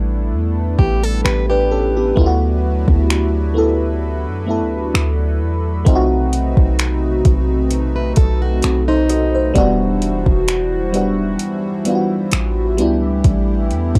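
A lush, dreamy FM electric piano with a soft pad layer, coloured by chorus and phaser, opens this romantic contemporary R&B passage at 65 BPM in D major, alongside a deep, boomy 808-style bass and a shimmering, retro pulse-width pad that pumps under sidechain. At 0.8 seconds a smooth, electronic drum kit with a soft kick, metallic hats and finger snaps comes in up front, while a bright, fingerpicked steel-string acoustic guitar adds brief arpeggios with audible finger squeak. The dry, gritty sound carries lush chords such as A9sus4, D69 and Em9 in a relaxed, lightly swung feel, cut from a longer piece.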